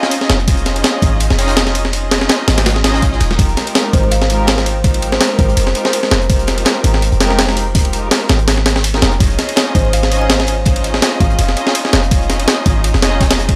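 A swung sixteenth-note breakbeat drives this dark, frenetic drum and bass excerpt in a jungle vein, built from two drum kits. Up front, a compressed, sampler-style kit supplies a thumpy kick, high-tuned snare and ride cymbal bathed in studio reverb, while a very quiet, saturated acoustic kit with a rolled-off top adds hi-hat and snare from a small room. From 0.3 seconds a deep, boomy 808-style bass with a sine body, noise layer and tube saturation sits prominently in a low register. Muted strings played con sordino hold veiled, lush chords throughout, moving from Dbadd9/F to Fm11 and back. In the background, a woody, ringing kalimba with a thumbnail pluck and dub echo plays brief melodic phrases at 3.9 and 9.8 seconds, and the recording as a whole carries a dry hardware grain.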